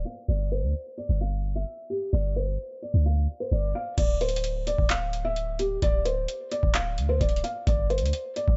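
A half-time 4/4 trap groove, hard-hitting and dark, opens on a clean, sine-toned 808-style bass and a mellow felt-muted upright piano carrying the melody with audible action noise, both up front under a filter sweep through the first 4 seconds, until a booming analog drum machine with a deep kick, metallic hats, handclaps and a crash cymbal arrives at 4.0 seconds, all in a dry, low-passed mix cut from a longer hip hop piece.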